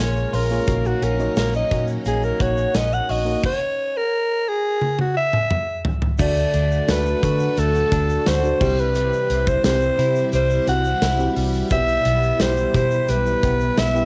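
A straight 4/4 pulse at 87 BPM drives this nostalgic, uplifting 1980s-style pop cut, taken from a longer piece. A big rock drum kit sits up front with bright cymbals, a punchy kick, a medium-tuned snare, tambourine and toms, all carrying a cassette-tape tint, and a drum fill runs from 4.8 to 6.2 seconds. A grainy tube shaker sits very quietly beneath it, while a dark, round, foam-muted fingered bass anchors the low end. A raspy, gritty alto saxophone carries the melody up front, soloing through the opening 6.2 seconds and colored by analog delay, over a glassy, bell-like FM electric piano with chorus. In the background, a lush sawtooth string machine holds sustained chords through phaser and ensemble chorus, and a compressed, cleanly picked direct-recorded guitar plays a riff with analog chorus and delay. The harmony moves from A#m7 and D#m7/A# into a chordless passage at 3.4 seconds before shifting to D, C and Em/B, all wrapped in light reverb with the feel of a home cassette recording.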